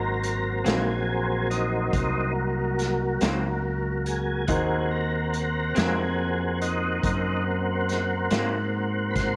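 A smooth tonewheel organ leads this rollicking, laid-back slow blues in 12/8 at 47 BPM, holding sustained chords through a slow rotary speaker with chorus vibrato over an Ab9 chord in Ab mixolydian. A round, punchy fretless bass sits up front beside a vintage acoustic kit with a boomy kick and rolled-off top, while an electric guitar through a small old amp adds dark, slightly broken-up accompaniment with tremolo from 0.6 to 8.6 s. A bright grand piano with audible action noise stays very quiet in the light small-room reverb of this 9.4-second fragment cut from a longer piece.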